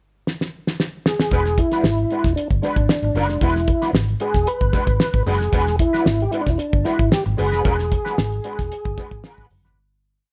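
Gritty and playful, this short funk piece opens with a drum fill on a dry, cloth-damped, thuddy kit with a fat snare, tight kick and ghost-noted groove, before an up-front tonewheel organ with chorus vibrato and slow rotary speaker enters at 1.1 seconds playing call-phrase motifs, joined at 1.3 seconds by a foam-muted, round fingered bass with chromatic approach notes and a mellow wah-treated rhythm guitar scratching out sixteenth notes over a single E9 chord, set in light reverb with a faint mains hum until a fade-out from 7.7 seconds.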